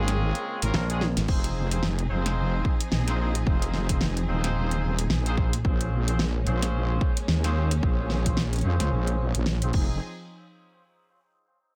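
A funky, gritty glitch hop excerpt in F minor at 110 BPM with a swung 16th feel opens on a heavy, saturated wobble bass beneath sidechain-pumped sustained chords from a distant, bowed string section with a soft attack and portamento and bright vintage horn stabs carrying dub echo, over punchy pop drums with a fat snare and metallic hats. A quick electric slap bass note pops up at 0.7 s as a drum fill builds, and at 1.3 s a layered, punchy electronic kick drives the groove while a filter sweep works on the horns across Bbm7 and Fm7 chords. The mix is dry, close and up front, with the bass and drums dominating.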